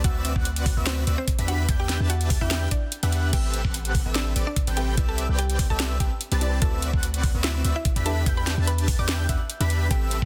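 Riding a half-time 4/4 groove at 146 BPM with a light 16th-note swing, this bittersweet, dreamy future bass fragment pairs a knocking electronic kick and a trap kit of sharp snare, metallic hi-hats and crash with a deep, boomy 808-style bass, while a huge detuned supersaw riff pumps against the kick and a woody FM mallet pluck melody and airy background arpeggios pump through chorus and delay, joined at 3.3 s by a soft, dark pluck accompaniment, over chords moving from D13 through Em7, Am9 and Cmaj9 in a dense, heavily limited modern master.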